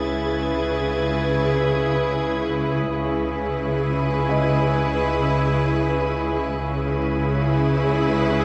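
Unfolding in free time, this eerie, uneasy cue for a suspense film score hangs on a single C#m7 chord throughout its 8.4 seconds, cut from a longer piece. A bowed symphonic violin section carries the melody on B4 with smooth, lush vibrato, while a viola section fills in accompaniment beneath it with a rich, even tone. Cellos and double basses anchor the bass, the cellos sounding distant and the double basses expressive and up front. A glassy harmonics texture of sine-like tones sustains the chords with drifting overtones, slow attacks and long releases, thickened by chorus and its own reverb. A felt-muted upright piano sits very quietly in the background, soft and intimate with audible action noise, while a focused studio violin section adds a high layer of texture only until 2.4 seconds, all set in a moderate scoring-stage reverb.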